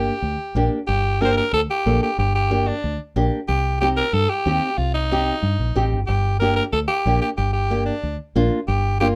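Cumbia in G minor at 184 BPM, this fiery, passionate fragment from a longer piece sets a raspy, gritty alto saxophone solo up front over a full-bodied, fingerpicked nylon-string guitar with audible finger squeak and a warm, foam-muted fingered electric bass, all three playing throughout in light reverb as the chords move from Gm to Cm at 3.5 seconds and back to Gm at 6.1 seconds.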